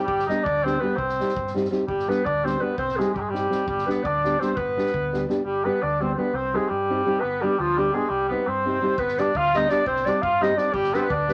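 Set in a driving 5/8 with a straight feel at 338 BPM counted in eighths, this Balkan wedding-band folk piece pushes steadily faster across its 11.3 seconds, a fiery yet bittersweet passage cut from a longer work in G phrygian dominant. A mellow clarinet carries the melody up front with a soft attack and classical poise, while a cor anglais sings a second line beneath it, touched with light vibrato and sounding distant and roomy despite its forward placement. A thumb-plucked nylon-string guitar supplies dark, deep classical accompaniment, and a fingered electric bass, direct and amped, adds a round, punchy low end from 0.1 seconds. A vintage drum kit with a tight kick, medium-tuned snare and rolled-off top plays quietly in a natural studio room, dropping out after 5.3 seconds and returning at 9.0 seconds. The harmony swings between G and C minor through two statements of the same section, all set in a moderate club reverb.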